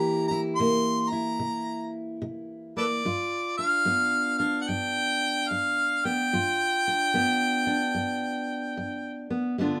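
A light reverb surrounds this short cut from a longer acoustic country blues, which has a soulful, rollicking swing. Up front, a warm, roomy harmonica carries the jazz-style solo melody with light vibrato, tongue slaps and scooped notes until 9.3 seconds. Beside it, a fingerpicked steel-string acoustic guitar with an auditorium tone plays the accompaniment, moving from C7 to G7 at 3.0 seconds.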